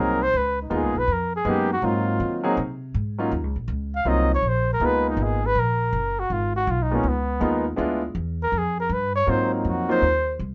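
A rough, muffled home-demo sound in a moderate studio room frames this playful fragment of small-group swing and bop at 161 BPM in Ab mixolydian, where a warm, up-front flugelhorn solos with vibrato, soft attacks and scooped notes over a clear concert grand piano with deep bass and long sustain and a woody, thumpy pizzicato upright bass, moving through rich chords from Db13 and Ab13 to a Ddim7 at 7.8 seconds before returning to Ab13.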